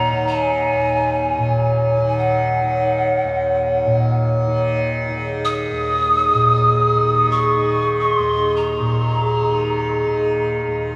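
A breathy bamboo pan flute carries the melody from the very start, its chiffy, tongued notes and vibrato high in the range and trailed by a diffuse ambient delay, over a buzzing, shimmering tanpura drone set up front and a pure, glassy glass harmonica texture with slow, smooth attacks. This haunting, meditative world piece floats in free time in Eb minor, tuned to A4 = 442 Hz, and is cut from a longer work. The dreamy mix is soaked in a huge ambient reverb with a 7.1 s decay alongside a small room sound, all colored by cassette tape, with the flute falling silent at 10.8 s as the drone and glass ring on to 11.0 s.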